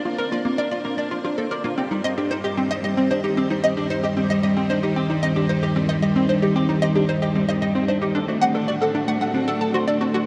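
A bouncy, detuned square-wave pluck sits up front with a bright riff, its chorus, delay and shimmer reverb sending it into a vast, dark reverb space in this expansive, cosmic stretch of sequencer-driven space music. Alongside it, a lush vintage string machine, also up front, holds slow-blooming ensemble chords with a moving notch, while a clean hollow-body electric guitar plays fingered arpeggios through delay and shimmer. The harmony drifts from Bbadd9 to Cmadd9, then turns to D7 at 8.2 seconds.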